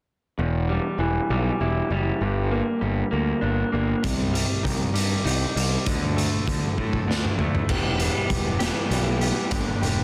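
Quiet-loud alternative rock at 66 BPM in a straight 6/8, dark and cathartic, where a slightly broken-up, lo-fi electric guitar through a small old amp picks up-front arpeggios with digital delay over a fuzzed, overdriven picked bass from 0.4 seconds, moving through Em, Gm, Cm and D5, before a gritty, muffled garage drum kit with a punchy kick and rolled-off top joins at 4.0 seconds and drives a fill at 6.8 seconds into a new section, all under light reverb and a dense, heavily limited modern master in this excerpt.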